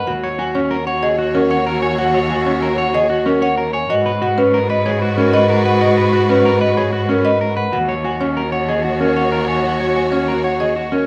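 Minimalist classical pattern music at 188 BPM in 6/4, hypnotic and meditative, where a woody, mellow marimba with soft mallets carries the melody over bright, picked clean electric guitar arpeggios, a distant French horn holds a second line in the background, a lush bowed string section sustains chords, and a rich cello supplies the bass, all moving through D#m7, G#m9 and back to D#m7 in a recital hall with moderate reverb and close, detailed microphones, in an 11.1-second cut from a longer piece.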